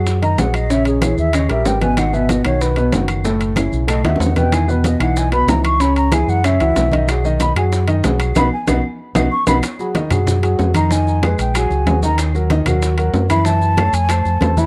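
Afro-Cuban jazz at a brisk 188 BPM in B major, sunny and danceable, with a breathy, mellow concert flute soloing throughout with vibrato and a touch of tape echo over an intimate concert grand piano whose action noise is audible and a dark, round fingered electric bass sitting up front. Congas, bongos and woody claves sit in the background, while ringing metal-shell timbales sound close and dry and grainy maracas round out the percussion, with drum fills at 4.0 and 8.8 seconds and a band accent from 8.4 to 9.6 seconds. The dry, close sound of a small 1970s-style studio frames this brief cut from a longer piece.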